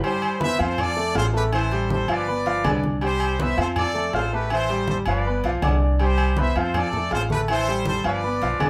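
Salsa at 161 BPM in C major, sunny and festive, with an up-front bright trumpet section carrying the melody over a brilliant, long-sustaining concert grand piano cycling through C, F, Am7 and G7, a woody, thumpy upright bass entering at 0.6 seconds, ringing agogo bells and timbales set distant in a large room, and compressed, saturated congas tucked into the background, all in a moderate studio ambience on this short cut from a longer piece.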